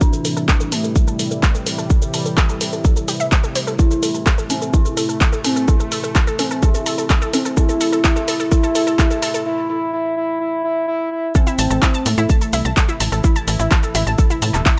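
Melodic techno at 127 BPM in A minor, this dramatic, melancholic passage is cut from a longer piece and rests on a single A minor chord. A punchy, layered electronic kick sits up front with an analog drum machine supplying handclaps, hi-hat and shaker, while a smooth, expressive lead glides through its melody with vibrato and portamento, carrying chorus and digital delay. Around it, a round, bright analog pluck spins arpeggios in a higher register, an eerie, inharmonic FM bell warbles in the background through phaser and delay, and a slow-attack resonant pad and a pulse-width-modulated drone sustain the harmony, all of these melodic layers breathing with sidechain pumping. Filter sweeps on the pluck and lead shape a build-up over the first 11.3 seconds, with a break from 9.5 seconds. At the drop, a tight, nasal sequencer bass joins at 11.6 seconds, driving the low end with fast, decaying sawtooth and square-wave plucks. 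A moderate, lush hall reverb gives the mix a spacious digital ambience.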